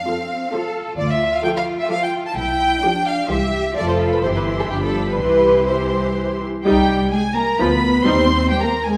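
An up-front violin section carries the melody high above the ensemble in this graceful, spirited excerpt from a quick classical-period movement for string orchestra in C major, in 3/4 at 129 BPM with a rubato feel. A lush second violin line and a rich, smooth cello bass begin together, joined by a distant viola accompaniment and then a dark, woody double bass section at 1.0 s, each bowed with vibrato. The scoring-stage reverb is wet, and the harmony turns to C minor at 6.6 s as the passage moves into a new section.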